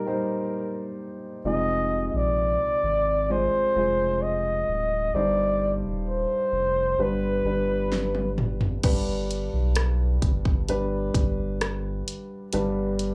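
Longing and emotional, this pop ballad excerpt opens with a breathy, whispered flugelhorn melody in a jazz style, its scooped notes and light vibrato sounding distant and roomy over a dark, woody upright piano moving through Ebmaj7, Fm7, Cm and G. A thick, saturated sub bass enters at 1.4 seconds, and a punchy electronic pop drum kit with a fat snare arrives at 7.9 seconds with a fill, just before the flugelhorn falls away at 8.4 seconds. The whole performance is heard as a live gig through the venue's PA, carrying club ambience and light reverb.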